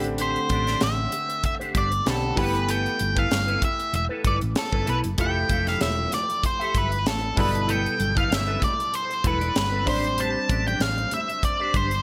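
This glossy, urban 1980s jazz-funk pop excerpt opens at 96 BPM in a lightly swung 4/4, with a clear grand piano and a chorused, envelope-filtered electric guitar riff over a round hollow-body fingered bass and a crisp fusion kit whose high-tuned snare, punchy kick and hi-hat sit up front in gated reverb. From 0.2 seconds a dark, fuzzy octave-fuzz lead guitar carries the melody up front through the Am11, G69 and Fmaj9 changes in G mixolydian. Distant, ringing congas played with soft hands enter very quietly at 5.2 seconds, all set in a small room with a bright digital sheen.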